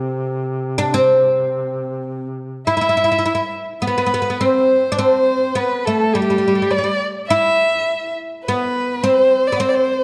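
A woody, plectrum-plucked fretless oud carries the melody up front over a distant, roomy duduk drone in this festive, stately Arabic maqam ensemble excerpt, and at 2.7 seconds the duduk stops as a dark, expressive bowed violin with vibrato and portamento enters on a second line, all set in a moderate scoring-stage reverb.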